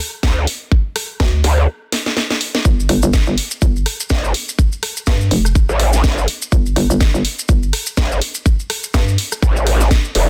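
Bass house in 4/4 with a swung sixteenth-note groove and an aggressive, swaggering mood, built on a tight electronic kick and a cracking, tape-warm garage kit of hi-hat, rim click and snare, while a growling, wobbling overdriven bass with chorus pumps against the beat and a hollow, bouncy FM bass knocks in from 1.2 seconds, a drum fill at 1.9 seconds breaks the flow, and grainy maracas enter at 2.6 seconds in this dense, heavily limited cut from a longer piece.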